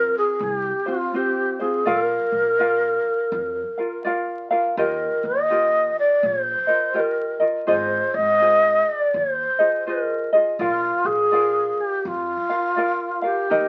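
A breathy alto flute with a wooden head carries the melody up front, its vibrato and crisp attack lending an unsteady, human charm to this languid, sunny Hawaiian piece, heard in a short cut from a longer performance. A light, fingerpicked acoustic ukulele accompanies close by, while a quiet pizzicato upright bass adds a woody, thumpy low end as the chords move from Fm through Bb, Ebadd9 and Ab6 at an easy swung 82 BPM in 4/4. Moderate studio reverb and the crackle of a very old 78 rpm record give the whole 13.7 seconds a vintage, sun-faded glow.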